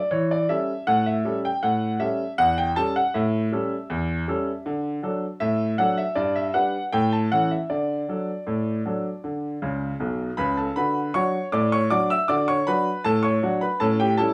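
A clear, woody upright piano opens this lively, playful ragtime excerpt alone, moving at 79 BPM in a straight 2/4 in D major and ranging from B1 up to E6. Its polished, up-front tone carries a long sustain over light reverb and studio ambience, with the harmony passing from A7 through D, G and A. A piano fill at 9.6 seconds leads into a new section at 10.8 seconds, which comes to rest on A7 near 13.8 seconds.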